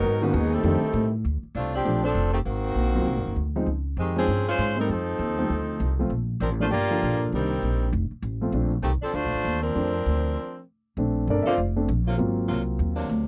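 Big band swing at a lively, energetic clip, cut from a longer piece, where an edgy, close-miked saxophone section carries the melody with light vibrato over woody pizzicato upright bass and natural-toned baby grand piano comping, a bright trombone section sounds only briefly in the background at the start, and after a break at 10.4 seconds the piano takes a solo from 11.0 seconds as a distant, roomy saxophone section holds soft-attack sustained chords, all in a dry, close 1970s-style studio sound.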